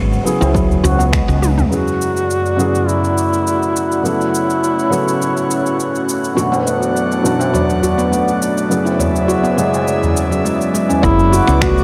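A mellow duduk with vintage 12-bit sampler grit and tape echo carries the melody from 1.7 seconds in this hypnotic organic downtempo cut at 103 BPM, floating over a felt-muted upright piano with audible action noise and sidechain pumping, an airy breathy pad, ringing nitrided-steel handpan arpeggios, a round woody fretless electric bass, a distant low-tuned tabla, and an overdriven deep house kit of finger snaps, shaker and toms with a punchy electronic kick, all bathed in a huge ambient reverb as the chords move from C#7sus4 through F#m and Bm/F# to D/F#.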